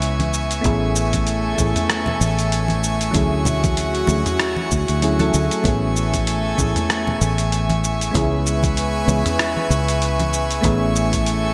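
A bright, 1980s-style digital sheen and a lush hall reverb frame this smooth, relaxed sunset chillout piece, cut from a longer work, moving at 96 BPM in A major with a lightly swung 16th-note feel over a C#m7, Amaj7 and Dmaj9#11 progression. An airy, breathy pad with chorus sits up front beside a punchy, foam-muted fingered electric bass, while soft, round electric-piano-like synth keys with chorus and delay add a mellow, decaying accompaniment. A gritty, tape-warm sampler-style drum kit of hi-hat, rim click, shaker and toms with gated reverb, very quiet close congas, and an overdriven electronic kick in the background from 0.7 seconds complete the groove.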